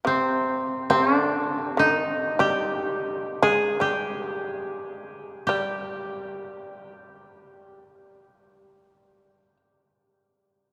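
A long, cathedral-like reverb surrounds this short, calm and austere passage of Japanese chamber music, cut from a longer piece and played with a free, rubato feel. The koto carries the melody up front, its fingerpicked tone dry and woody despite the resonant space around it. Beneath it the fretless shamisen takes the second line, plucked with a plectrum in a lower register, its sound percussive with a distinct buzz. Both instruments sound together from the first moments to the close at about 9.6 seconds, and the pace gradually slows through the opening stretch until around 5.5 seconds, where a second section begins. The spare pairing of string voices and the long echo of the hall give the music a still, ceremonial gravity.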